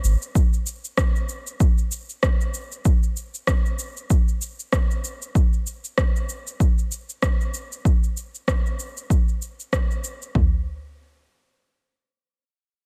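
An electronic cabasa and rim click open this organic downtempo excerpt at 96 BPM, their layered, produced sound carrying a small-room character and a swung sixteenth-note feel. At 0.4 seconds a deep house drum kit joins with a punchy kick and toms, sitting up front and bearing the same re-recorded room texture. The overall sound is dry, and the mood is mystical and earthy.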